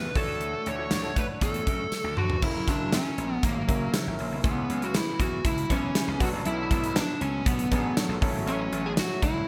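1980s-style pop with a glossy, nostalgic mood, led by a dark, compressed fuzz guitar melody up front over a concert grand piano with audible action noise and subtle chorus, a very quiet, blurred granular cloud pad, and a punchy, overdriven slap bass. A gated 80s drum kit with bright cymbals and a tight kick drives the groove, with a drum fill at 1.9 seconds leading into a Dmaj7-to-F#7 move, while a jingly tambourine sits very quietly beneath. At 5.4 seconds a crystalline FM synth bell enters in the background, warbling through chorus, phaser and digital delay, all within a bright digital production and a lush hall reverb.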